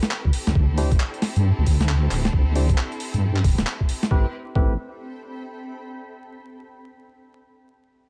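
A skippy two-step garage groove at 135 BPM in 4/4, swung at 63% on the sixteenths, drives this moody A minor fragment cut from a longer piece, tuned to A4 = 435 Hz. An up-front, thumpy electronic kick, overdriven and pitched down, sits under a gritty sampler-style boom bap kit of handclaps, hi-hat and a high-tuned snare, both drum parts dressed in studio reverb. A deep, dark wobble bass, sawtooth and sine layers detuned with chorus and sidechain pumping, carries the low end prominently, while a hollow, mellow organ-like stab with chorus, cassette tape colour and digital delay runs through a filter sweep. Behind them, a distant, bowed violin section holds sustained chords with vibrato, and a cloudy, blurred granular pad evolves softly in the background, both pumping against the kick as the harmony moves from D9sus4 to Am9. The drum kit drops out at 4.1 s, and the pad lingers until 5.8 s, all over a dry sound with vinyl crackle running throughout.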